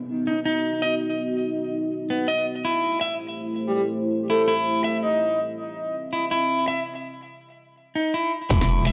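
A clean, picked electric guitar plays arpeggios through a low-pass filter and tape echo in this dark, spacious half-time drum and bass excerpt, over a deep, detuned analog pad with chorus and sidechain pumping that moves through B, Am7 and C. A breathy, flute-like synth lead with vibrato, subtle chorus and analog delay sings a brief melody from 3.7 s to 5.4 s, all set in a moderate echo-chamber reverb on a dry, gritty recording. At 8.5 s a growling 808-style bass, a tight electronic kick, and a layered kit with a woody snare and metallic hats arrive, with a very quiet impact following a moment later just as the fragment ends.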